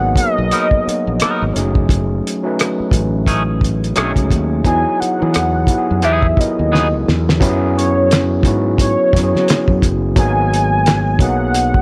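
R&B and neo-soul in a relaxed, swung 4/4, this introspective, soulful fragment from a longer piece moves through lush extended chords such as G#m9, Emaj9 and B13. A velvety synth lead carries the melody, its detuned sawtooth tone smoothed by chorus and vibrato, while an overdriven tine electric piano sits up front with a gritty, amp-driven accompaniment. A fretless electric bass anchors the low end with a direct, warm tone touched by subtle chorus. Entering at 0.2 seconds, a cloth-damped drum kit of kick, fat snare, rim click, hi-hat and handclaps sounds muffled and saturated, with a rolled-off top, and a fill from 6.7 seconds leads into the second section at 7.4 seconds on an F#7sus4. A bright, clean, twangy electric guitar adds a picked second line until 6.9 seconds, and the whole performance sits in a small room with light reverb.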